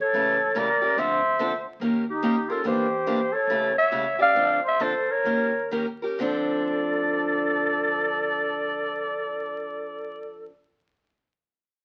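Acoustic string swing in the jazz manouche style, this swinging, virtuosic excerpt puts a raspy, growling clarinet melody with scooped notes and light vibrato up front beside a pure, soft-attacked silver concert flute second line and a bright, boxy picked parlour guitar, while a thumpy, woody pizzicato upright bass sits in the background, the whole passage slowing down between 2.6 and 6.2 seconds before a new section begins, heard through moderate studio reverb and the crackle of a very old 78 rpm record.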